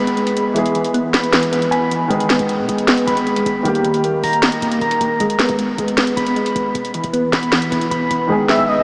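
A dreamy, reverb-soaked mix with a small-speaker quality opens this short cut from a longer hip hop and trap piece, moving at 155 BPM in a half-time feel in G# harmonic minor, with a mood both hard-hitting and melancholic. Soft, round electric-piano-like synth keys carry arpeggios up front throughout, coloured by chorus, phaser and tape echo, while a dark, vintage concert grand piano with deep bass and short sustain adds accompaniment until 5.2 seconds, then briefly returns near the close. Electronic trap drums arrive almost immediately, with a sharp snare and metallic hi-hats sitting forward, and the hats drop out for the final moments from 8.3 seconds. A punchy, tight 808-style bass with a noise layer joins at 2.1 seconds, sitting in the background beneath chords that move from G#m through E and D#. At 8.5 seconds a velvety synth lead with sub octave, vibrato and chorus appears up front as a brief second line.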